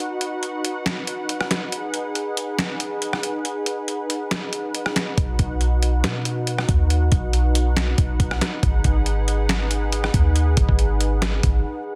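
Hip hop with a trap edge, this dreamy, triumphant passage moves at 139 BPM in a half-time feel, as a warm, smooth, detuned sawtooth pad with chorus sustains soft-attack chords shifting between B and G#m7. A compressed, pitched-down, sampler-style drum kit sits up front with finger snaps, hi-hat, rim click, a thumpy kick and a gritty, medium-tuned snare with soft clipping. At 5.2 seconds a deep, boomy, sine-based 808 bass joins, clean and dark with a fast attack and decaying notes, all set in light digital ambience under a dense, heavily limited modern master.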